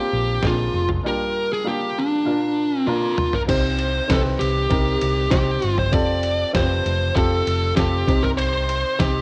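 Earnest and dramatic, this short cut from a longer piano-driven pop piece moves at a straight, steady four-beat pulse. A fuzz lead guitar carries the melody up front, its picked, distorted tone sitting over a woody, boxy upright piano whose short-sustained chords fill out the accompaniment from the start. A dark, round hollow-body electric bass enters at 0.1 seconds with a picked, amped sound low in the register. The lo-fi sampler-style drum kit comes in at 0.4 seconds, compressed, pitched down, muffled and tape-warm, with a thumpy kick, medium-tuned snare, ride, crash and toms, and it plays a fill from 2.9 seconds. That fill leads into a new section at 3.5 seconds, where the harmony moves into C dorian, passing from C minor through an F added-ninth chord and back to C minor, all set in a moderate echo-chamber reverb.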